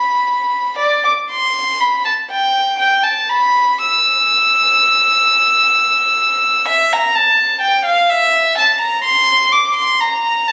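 A lone bowed violin sits up front with a reedy, gut-string tone in period style, playing high in its range from D5 to E6 through this brief 10.5-second fragment of a baroque-style suite movement for unaccompanied violin. The mood is introspective and grave, moving in a slow, rubato 3/4 at roughly 56-65 BPM. A moderate recital-hall reverb surrounds the single player, and the phone capture in the room carries added studio reverb and compression.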